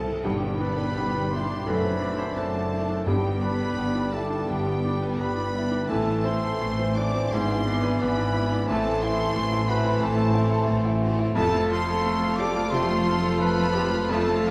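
A hard-mallet timpani fill opens this lush, lyrical romantic excerpt for piano and orchestra, and a very quiet tam-tam sounds with the full ensemble's accent at 0.2 s as a clear, short-sustained baby grand piano and a distant, vibrato-rich high violin section carry the melody, while an airy, hollow silver flute, a warm clarinet and a very quiet cor anglais add second lines. A second, focused violin section weaves its own line, intense violas and a bassoon fill in the accompaniment, mellow French horns and bright trombones hold tight sustained chords, and cellos and double basses anchor the bass. The rubato phrasing moves from G through A minor to a closing F chord inside the echo of a stone room heard from further back, and the timpani falls silent at 4.1 s.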